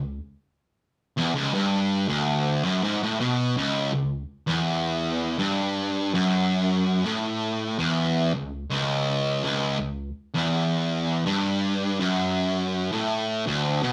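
A lone fuzz guitar opens this heavy, ominous metal excerpt in straight 4/4, its bright, distorted, picked tone double-tracked, compressed and up front in a low register, moving into a new section at 3.6 seconds and running to 13.9 seconds inside a moderate studio reverb that captures a band playing live in one room.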